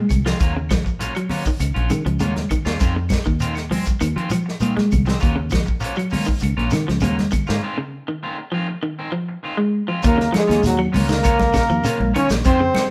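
A band playing live in one stone-walled room, with moderate reverb, carries this hypnotic, driving afrobeat cut at 100 BPM in Eb dorian, where a bright, twangy, slightly broken-up electric guitar picks arpeggios over a round, foam-muted fingered bass and a tight soul drum kit up front with a medium-tuned snare and rolled-off top. A second picked guitar with a warmer edge adds stabs, while high-tuned congas with soft hands, grainy shekere and woody claves sit in the background as the chords move between Ebm9 and Fm7, with a break at 7.6 s. At 10.1 s a punchy trombone takes the melody up front with vibrato, and a clear, smooth-topped trumpet plays a second line above it.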